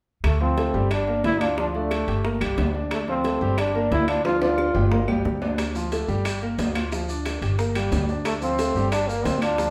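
Set in a reverberant large studio where the band plays live together, this driving, fiery salsa excerpt in D minor at 180 BPM rocks between Dm and Gm, with a bright, distant-sounding trombone solo up front that pauses at 5.0 seconds and returns at 8.3 seconds, a brilliant, long-sustaining grand piano accompaniment, a dark, thumpy gut-string pizzicato upright bass up front, ringing metal-shell timbales, a drum fill from 4.2 to 5.6 seconds, tight, high-tuned bongos and woody claves in the background, and grainy, mellow maracas joining at 5.6 seconds.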